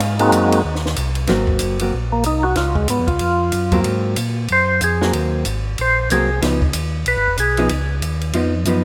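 Soul jazz organ trio in Ab mixolydian at 187 BPM, greasy and swinging with a 62% eighth-note swing, where a round, dark tonewheel organ carries the bass line through chorus vibrato and a slow rotary speaker beneath a dry cocktail drum kit with a punchy kick, high-tuned snare and dark cymbals. A percussive tonewheel organ with key click and second-harmonic percussion takes the melody from 0.2 seconds, moving into a solo at 1.3 seconds as a picked, compressed hollow-body jazz guitar enters to comp over Ab9 and Db chords. The rough home demo mix sits in a lush hall reverb, with the lead organ most prominent in this short cut from a longer piece.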